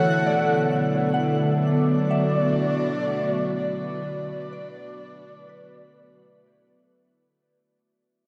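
Ambient music at a slow 62 BPM, serene and weightless, where a breathy, flute-like synth lead carries the melody up front over a glassy FM pad's sustained chords on B minor while a soft synth bell plays pure arpeggios, a string-like drone, a twinkling granular texture and a nasal cello section on the bass sit in the background, and the dreamy cassette-tinged mix, soaked in lush hall reverb, fades out across this short excerpt cut from a longer piece.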